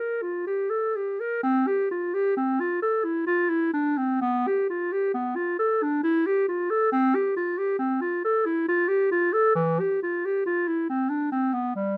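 A lone clarinet with a dark, classical tone sits up front for the full 12 seconds, playing a baroque-style fantasia for unaccompanied clarinet. The line moves between E3 and Bb4, in a dance-like triple metre whose beats stretch and push with free rubato. The mood is radiant, even as the clarinet's shadowed colour darkens the phrases. A light reverb gives the solo voice a touch of air around it. This short passage is cut from a longer piece, so it opens and closes mid-thought.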